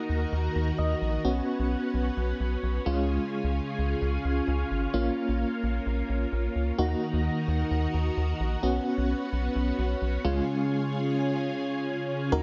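A straight 4/4 pulse at 130 BPM drives this cool, melancholic synth-pop passage, where a rubbery, hollow square bass sits up front beneath warbling, vintage organ-string chords thickened by ensemble chorus, while a mellow FM electric piano with tremolo adds a brief fill at 0.6 seconds, all within a light digital ambience over a cycle of Ebm, Bsus2, Db and Bbm.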